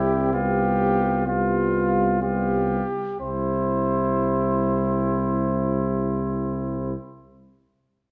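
A wet recital hall reverb, with a decay of about 1.4 seconds, surrounds this short, triumphant cut from a longer classical brass quintet piece in C major, tuned to A4 = 444 Hz. The tempo sits at a stately 60-66 BPM in 3/4 with a straight feel, easing back through the opening phrase before a new section arrives at 3.2 seconds. A dark trumpet carries the melody up front between F4 and C5, while a mellow, punchy second trumpet with a vintage character holds a close second line from E4 to F4. Beneath them, a euphonium with light vibrato sits on G3, a smooth-topped French horn moves between B3 and C4, and a bright bass trombone anchors the bass on C2. The harmony rests on a G7 over a C pedal before resolving to C major at 3.2 seconds, giving the full 6.9 seconds a warm, ceremonial glow.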